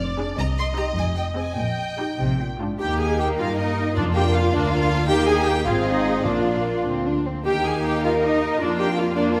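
In a lilting 6/8 at 96-109 BPM counted in dotted quarters, this quick classical-period movement for symphony orchestra moves with a flexible rubato feel, cheerful and spirited in Eb major, and is cut from a longer piece. The cellos and double basses sound from the start, the cellos giving a smooth, even bass and the double basses sitting up front with a rich, bowed low end, and at 0.2 seconds the violas add lush, focused accompaniment. A second violin line, also present from the start, brings expressive portamento and vibrato, and at 0.4 seconds the leading violins enter with the melody, played sul tasto with a soft attack that feels intimate and close. The harmony opens in C minor before turning toward the home key. At 2.8 seconds a French horn section joins with sustained chords, set in the background with light vibrato and a classical-style tone. Very quiet timpani with soft mallets add a round tone from 4.0 to 6.8 seconds, and a reverberant scoring-stage ambience surrounds the ensemble.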